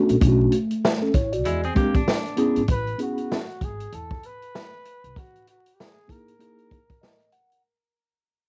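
A mellow tine electric piano opens this relaxed jazz-hop excerpt with a cassette-tinged, up-front sound, joined at once by a punchy vintage drum kit with a rolled-off top and a woody pizzicato upright bass, as the chords move from Bm9 to E7alt. A clean, compressed electric guitar adds a brief fingered second line before a veiled, breathy trumpet in a bucket mute takes the melody at 2.7 seconds, its scooped notes and light vibrato sitting distant and intimate over an Amaj9 chord. The bass stops at 5.1 seconds for a break on F#13, where the electric piano plays a closing fill as the music fades, set in light reverb with vinyl crackle.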